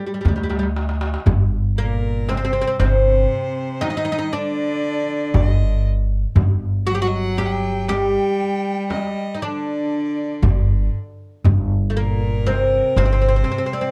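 A woody, double-strung oud leads this soulful, melancholic Arabic maqam ensemble piece in 10/8, plectrum-plucked and up front over a growly pizzicato upright bass. A drum fill follows just after the oud's first notes, with a crisp, metal-shelled darbuka sounding distant in a large room and a close, dry frame drum in the background. From 1.8 seconds a clear, earthy bowed cello and a smooth violin with vibrato add second lines, all within a dark production touched by light reverb.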